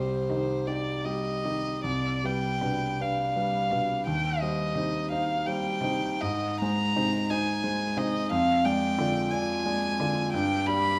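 Classical chamber music for piano trio, this is a solemn, elegiac slow romantic movement in C minor, moving at 49-60 BPM in a rubato 6/8 and cut from a longer piece. An intimate violin with light vibrato, a soft attack and an airy sul tasto tone carries the melody up front, beside a clear grand piano accompaniment whose action noise is audible, while a nasal, floating cello plays a pure second line in the background from 0.3 to 10.3 seconds. The harmony moves from Cm through Ab and Ddim/F to G, and the violin and cello sit close within a wet recital hall reverb.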